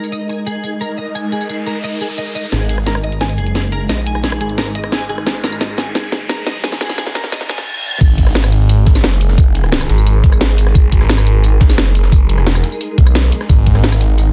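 A swarming, detuned drone holds tense sustained chords under a clean, picked twelve-string electric guitar playing arpeggios through chorus, delay and a low-pass filter, while an up-front drum kit with a cracking snare drives this dark, futuristic technical drum and bass excerpt at 175 BPM. From 2.5 seconds a thick, swirling phased saw bass with overdrive pushes through a build-up of filter sweeps, a background riser, a drum fill and a reverse cymbal. At 8.0 seconds the aggressive drop lands with an overdriven, knocking electronic kick and a very quiet, gritty, pitched-up breakbeat layer, while the drone and bass keep pumping inside a dense, heavily limited and dry mix.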